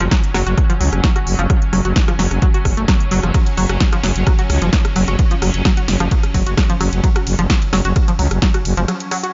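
A dry, close sound with a dulled top end frames this short cut of driving peak-time techno, relentless and intense in a straight 4/4 feel. A punchy, layered electronic kick sits up front, joined by a techno drum kit of smooth hi-hats, ride cymbal, rim click and a punchy snare. Beneath it, a thick, growling FM bass with a sine core holds the low end, pumping against the kick. A tight, nasal sequenced synth riff built from detuned sawtooth and pulse waves snaps with a filter pluck, thickened by chorus and tape echo, while a tense, swarming drone of detuned sine voices warbles and evolves far behind it through phaser and its own reverb. The kick drops out at 8.5 seconds and the bass at 8.9 seconds, leaving the riff, drone and kit to carry a brief break to the end.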